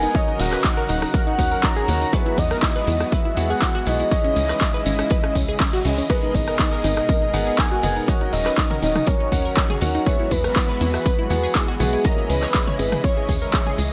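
A straight 4/4 pulse at 121 BPM drives this bittersweet progressive house excerpt, built on a punchy, overdriven electronic kick up front, a big-room dance drum kit with handclaps and with metallic hats and cymbals pumping under sidechain, a gritty, very quiet breakbeat kit, a distant, jingly tambourine, and dry analog congas and toms that join at 6.8 s, while a tight sawtooth sequencer bass and detuned unison pluck arpeggios throb beneath a thick, nasal pad, brilliant grand piano stabs in the background, and a round, octave-layered synth lead carrying the melody with chorus, tremolo, tape colour and delay, shadowed by an airy, dreamy second lead over chords moving from D#m7 through Eadd9, C#madd9 and G#madd9.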